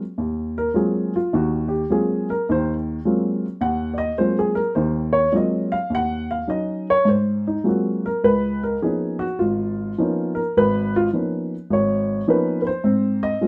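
A relaxed, playful swing at 104 BPM with a loose rubato feel carries this short solo jazz excerpt in Ab mixolydian, where a dark, woody upright piano with short sustain sits up front in a moderate studio reverb, spanning a broad low-to-high range over Ab13, Ebm7 and Db13 harmonies before settling on Ab at 12.8 seconds.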